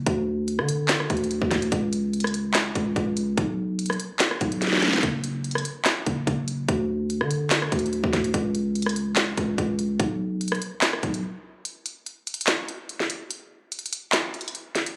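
Captured on a phone in the room with studio reverb, compression and a light digital ambience, this menacing, brooding half-time trap cut from a longer hip hop piece moves at 145 BPM in 4/4, tuned to A4 = 442 Hz. A growling, buzzy 808-style bass with a fast attack and decaying sine body sits up front beside an electronic trap kit of hard-clipped kick, sharp snare, crisp hi-hats, handclaps and rim clicks. The kit throws in a fill at 4.6 seconds, and after the bass drops out at 11.2 seconds the drums carry the break to the end.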